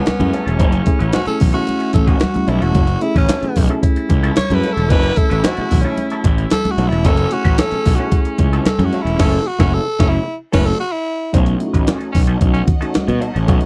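A dry, close 1970s-style studio recording of cool, hypnotic funk, cut from a longer piece, in which a raspy, vibrato-laden tenor saxophone solos over a bright baritone saxophone second line, a dark hollow-body jazz guitar with wah, a gritty, compressed sampler-style breakbeat kit with a thumpy kick and high-tuned snare, congas with a thick skin, a worn, slightly out-of-tune tine electric piano playing stabs through phaser, and a punchy, fuzz-overdriven picked bass up front, with very quiet, crisp handclaps from 3.3 to 8.8 seconds, a band accent and break closing the solo at 11.3 seconds, and a warm, lush bowed string section in the background from there on.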